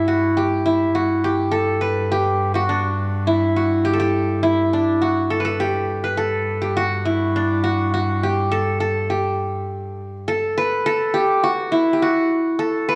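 A bright-edged qanun, plucked with fingerpicks on its triple strings and set up front, carries a stately, festive melody from the first moment while a close, bowed cello played sul tasto holds a pure, floating drone on G2 beneath it in this Arabic maqam ensemble piece in G maqam ajam at 103 BPM, all within a moderate recital hall reverb, until the cello falls away at 10.3 seconds and the qanun continues alone to 13.0 seconds.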